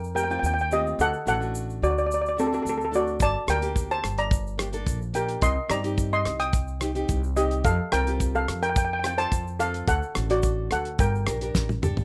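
Calypso in G minor at 108 BPM, bittersweet and brooding, with a dark, shimmering steel pan carrying the melody up front over woody, thumpy pizzicato upright bass, fingerpicked classical nylon-string guitar, a grainy egg shaker and a damped 70s drum kit that enters at 3.2 seconds with a fat snare and tight kick before a drum fill at 11.6 seconds, all in a rough home demo mix with light reverb, cut from a longer piece.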